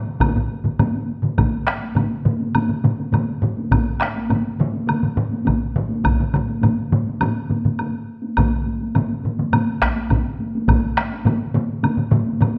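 A cut from a longer Japanese traditional taiko piece opens with four taiko ensemble parts and a woodblock entering together almost at once, setting a driving, powerful straight 4/4 pulse. Two taiko parts are struck with hard sticks, one distant in a large room yet up front and the other close and dry, while two more use heavy sticks, one in a small room and one up front in a live room. A woody, close woodblock runs throughout, the whole sitting in a recital-hall reverb, and one heavy-stick taiko drops out at 10.8 seconds as the rest drive on to the end.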